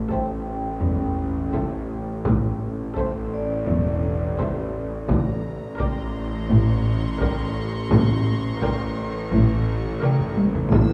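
A straight 4/4 pulse comes from a taiko ensemble struck with hard sticks, its vintage, band-limited tone giving this eerie, mysterious suspense cue a steady, ominous heartbeat, capped by a drum fill at 10.0 seconds. Beneath it sits an up-front, bowed-like drone, nasal, tense and bright, with vibrato, a noise layer and its own built-in reverb, sustaining a low, string-like tone throughout. Sul tasto strings sit in the background: a violin section carries the soft melody while a second, pure and floating violin line and an intimate viola section fill in the harmony, and a rich double bass section and a distant cello section join on the bass at 0.8 seconds. A vibraphone played with soft mallets adds a metallic, ringing, airy shimmer with slow motor vibrato. When the harmony shifts at 5.1 seconds, a higher violin section enters with a lush, lightly vibrating texture. The whole ensemble is heard from further back in a wet scoring-stage reverb, giving the fragment a cavernous, haunted space.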